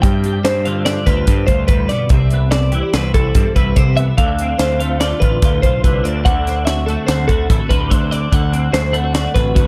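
Restless and wistful, this math rock and midwest emo excerpt moves at 145 BPM in 5/4, with two bright, twangy twelve-string electric guitars, one picking chorus-washed accompaniment and the other tracing tape-echoed arpeggios up high, over a growling overdriven picked bass and a crisp, up-front fusion drum kit with a high-tuned snare and punchy kick, all set in a dry, dark production as the chords pass from G7sus4 through Cmaj7 and Dm7 to D7.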